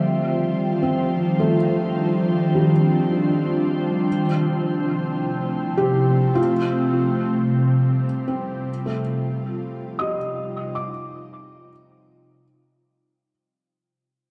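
Weightless and luminous, this ambient waltz-time fragment from a longer piece pairs an airy, detuned pad of sustained chords and a calm organ-like sine drone, both washed in ensemble chorus, with a dark felt-muted upright piano that enters at 0.8 s with intimate arpeggios carrying audible action noise through analog delay and shimmer reverb, all drifting over Ebmaj9, Dm9 and G9sus4 in an echo-heavy spring-reverb space before fading out from 7.1 s.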